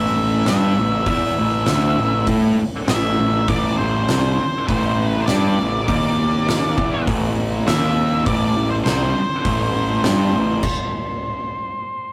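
A growly, bright fuzz bass sits up front in this raw, gritty garage rock excerpt at 100 BPM in A minor, joined by a double-tracked thick fuzz guitar riff in the background, an oversized low-tuned drum kit with a punchy kick, fat snare, dim-toned cymbals and a pumping big-room sound from 0.5 s, and a dark octave-fuzz lead guitar melody with slapback echo that carries on alone after the drums end at 10.8 s, all in a rough rehearsal-room recording with tube saturation and small-room ambience.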